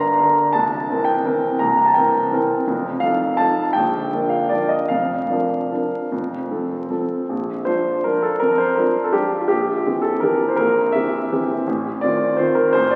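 Graceful and sparkling, this rubato classical piano waltz excerpt in Bb major sways in 3/4 at 142-179 BPM, with a solo concert grand, up front, open and deep in the bass with long sustain, ringing through a wet concert hall and shifting into a new section at 7.3 seconds, all heard through the crackle and dulled top end of a very old 78 rpm record.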